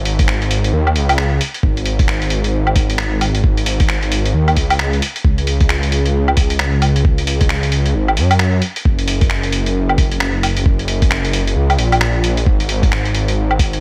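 A detuned sawtooth bass opens this rainy, nocturnal future garage piece, sitting up front with a menacing, evolving character that blends square and sine tones, a filter swell, tube saturation and sidechain pumping beneath a fast attack and sustained notes between F#1 and F#2. At 0.1 seconds a lo-fi sampler-style kit arrives with finger snaps, hi-hat and woodblock, pitched down, compressed and tape-warm, its muffled sound re-recorded in a large room yet still placed up front. A compressed electronic kick enters at 0.2 seconds, thumpy and dull at its natural pitch. The groove runs at 133 BPM in 4/4 with a 61% swing on the 16ths, tuned to A4 = 438 Hz. Vinyl crackle and little reverb give the mix a dry, dusty surface, and the passage is cut from a longer piece.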